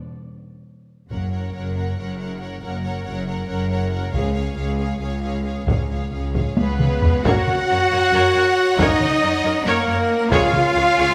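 Set in a moderate scoring-stage reverb, this heroic, triumphant passage of epic orchestral film score moves at 275 BPM in eighths, in a straight 7/8. It opens on a brief break: close, dry timpani struck with hard mallets sound in the background, and a drum fill leads in. At 1.1 seconds the full string body arrives. A lush, expressive violin section carries the melody with vibrato and a soft attack, a second, focused violin section takes a higher line, and distant, even violas, cellos and double basses fill out the accompaniment and bass. A warm, roomy French horn section holds sustained chords over the Gb and Db harmony, while an up-front taiko ensemble, played with hard sticks, drives the music with a vintage, band-limited punch. At 6.6 seconds another drum fill brings in a pure, very quiet flute section on a second line and a solo trumpet adding stabs from the background, and a tight trombone section briefly joins on sustained chords before the timpani return near the close of this section cut from a longer piece.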